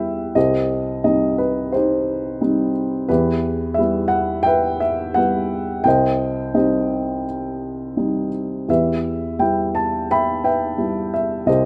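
A dark, woody upright piano plays alone from the start in this lyrical classical solo piece, moving in a free rubato around 86 BPM in 4/4 and in E harmonic minor, its chords shifting between Cm and Em over the roughly 11.7-second fragment. The mood is bittersweet and cool, with the piano spanning C2 to B5 and its notes ringing with long sustain. Close, detailed microphones place the instrument up front, with a touch of light reverb around it.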